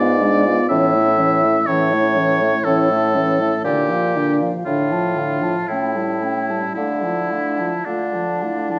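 Heard in a reverberant recital hall with a rolled-off top end, this brief excerpt from a slow, romantic wind quintet movement in 3/4 unfolds with rubato and a yearning, melancholic mood. A hollow, airy flute carries the melody from the background, while the oboe, up front with light vibrato, sings a clear second line above a punchy, close-miked clarinet and a dark French horn in the accompaniment. The bassoon anchors the bass with a soft attack and present tone, and the harmony moves from a diminished chord through A and B-flat before resolving at 6.8 seconds.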